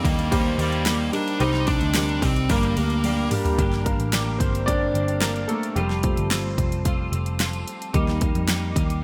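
Driving and dramatic, this piano-driven pop excerpt moves at 110 BPM in G minor, with a bright 1980s-style digital production and light reverb. A dark, distorted fuzz lead guitar carries the melody with digital delay through the opening 3.3 seconds, while a muted French horn section adds a nasal, metallic second line from the background for just over a second. Underneath, a concert grand piano with deep bass and analog chorus sits up front, joined by a twangy, compressed twelve-string electric guitar riff treated with ensemble chorus. A round, foam-muted vintage electric bass and a punchy, layered pop drum kit with a fat snare and bright hats hold the groove throughout. After a drum fill at 3.0 seconds, the piano takes a solo from 3.6 seconds to the end, over chords moving from Gm through F to Eb.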